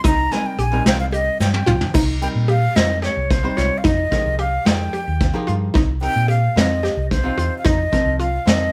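Brooding and intricate, this progressive instrumental excerpt moves in 7/8 at 221 BPM counted in eighths, with a straight feel in C minor, cut from a longer piece. A breathy, close-miked concert flute carries the melody up front between C5 and Bb5, taking a solo over the opening 1.9 seconds while the brush kit plays a fill from 1.4 seconds. An analog pluck with a fast attack, short decay and chorus spins arpeggios, its sawtooth and square tones layered with noise. Underneath, a round, punchy hollow-body short-scale electric bass anchors the low end, and a dark, clean archtop guitar, miked and amplified, adds picked accompaniment from 0.3 seconds. The vintage brush drum kit sits forward with a muffled, lo-fi character, dark cymbals and a punchy kick, while a grainy tube shaker adds faint percussion only until 1.8 seconds. The band plays live in one room with moderate studio reverb, and the harmony moves from Cm7 through Fm11 and back to Cm7 before resting on F7sus4.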